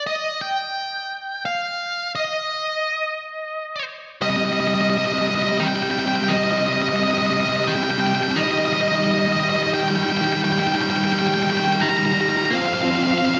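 An octave-fuzz lead guitar opens alone with a distorted, picked melody, then at 4.2 seconds a biting, double-tracked overdriven guitar riff joins up front, and this melancholic, brooding rock excerpt in C minor at 87 BPM in 3/4 builds over Cm, Eb and F5 chords, both guitars carrying slapback echo inside a lush hall reverb that gives a big arena sound.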